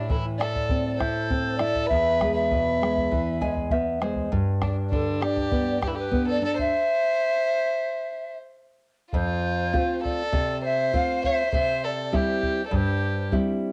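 Wistful and melancholic, this short Andean folk excerpt moves at an unhurried, straight 4/4 pulse with the feel of a home recording on cassette. A reedy bamboo pan flute carries the melody with an airy, distant tone, vibrato, a soft attack and a touch of chiff. Beneath it, a single bowed violin plays a second line, pure and floating, its sul tasto sound smooth on top and tinged with tape. Up front, a full-bodied, fingerpicked nylon-string guitar in a deep classical voice supplies the accompaniment, adding a fill between 3.1 and 4.3 seconds. A deep, dark bombo sits close and dry, while moderate spring reverb and a small room lend the ensemble a modest sense of space. The harmony passes from A minor through E and G to a chordless stretch, then opens onto F and C in a brief second section starting at 9.1 seconds before the fragment cuts off.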